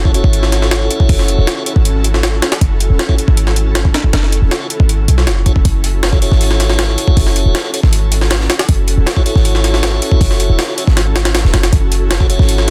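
Drum and bass with a raw, frenetic jungle edge at 158 BPM in F# minor, this excerpt rides a single F#m7 chord as a gritty, overdriven, pitched-up sampler kit with a thumpy kick and high-tuned snare sits up front beside a deep, boomy 808-style sine bass, while piping tonewheel organ stabs with key click and dub echo join them, and from 5.7 seconds a dark, rolled-off breakbeat kit adds hi-hat and snare in the background of a dense, heavily limited small-room mix.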